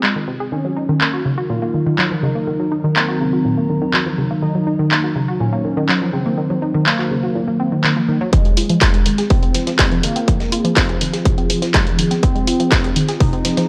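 A dry, gritty cassette-tape sound with light reverb frames this dark, hypnotic melodic techno excerpt. A moody analog pad with chorus and phaser holds sustained chords beneath a lush, detuned unison pluck tracing arpeggios through tape echo, while a juicy, warbling resonant sweep polysynth carries the melody with analog delay, each of the three pumping to the sidechain. A techno drum kit of handclaps and filtered hats sits up front from the start, and at 8.3 seconds a build-up begins as a distorted electronic kick drum and a gritty, compressed soul sampler-style kit with hi-hat and snare join in the background.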